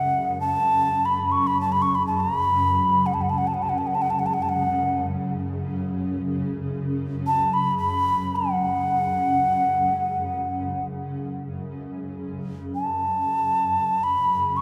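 Both parts sound together from the very start: a breathy alto ocarina carries the melody high above a granular cloud pad that holds a low drone. This is haunting, meditative world music that drifts in free time, and the passage is cut from a longer piece. The ocarina has a clay tone with a soft attack, vibrato and an unsteady quality, and its tape echo trails each phrase as it sits up front in the mix. Beneath it, the pad is cloudy and full-bodied, built from detuned sine voices in unison, with a slow attack, a long release and its own reverb plus a subtle chorus that leave it blurred and slowly evolving. A plate reverb soaks the whole mix, giving a dreamy sound that continues to the end at 14.6 seconds.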